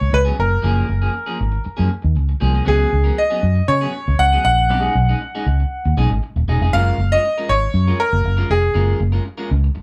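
A straight disco groove in 4/4 drives this glamorous, danceable snippet. A brilliant, up-front concert grand piano carries the melody until 9.0 seconds, a dark, round, foam-muted electric bass sits prominently underneath, and a clean, twangy picked electric guitar fills in the harmony over rich chords like F#maj9 and C#7sus4, all captured as a band playing together in a small room with modest reverb.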